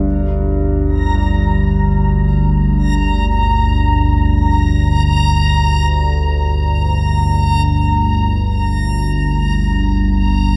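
Unsettling and dark, this dark ambient drone drifts in free time around G minor, tuned to A4 = 438 Hz, in a short excerpt cut from a longer piece. An up-front analog drone holds the low end from G1 to D2 throughout its 10.6 seconds, its sawtooth and pulse-wave tone evolving through pulse-width modulation and a moving notch, softened by a lush chorus into something mellow. Set in the background, a warm, smooth, vintage grand piano plays arpeggios around G2, its notes trailing through tape echo. From 1.0 seconds a reversed, swelling texture joins high at Bb5, a bright, detuned, granular triangle sound with a dreamy soft attack and its own built-in reverb. A moderate cathedral reverb with a 5.5-second decay surrounds the whole, giving the sound a cavernous space.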